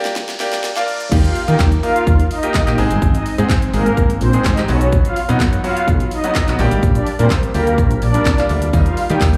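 Heard as a live club performance through the venue's PA, with a high-pass filter and club reverb, this upbeat, euphoric dance-pop excerpt opens on a short build-up where a background riser and a drum fill lead into the drop at 1.1 seconds. The punchy, layered electronic drum kit sits up front with a fat snare, bright hats, handclaps, shaker and crash, while a brilliant, polished baby grand piano pumps against the sidechain with slapback echo and a very quiet, jingly tambourine appears at the start and end. From the drop, a growly, hollow-body fretless bass with ensemble chorus pumps up front, and a detuned sawtooth supersaw swell carries the slow-attack, evolving melody through slapback and tape echo over chords moving from Ebadd9 through Ab, Bsus2 and Gm.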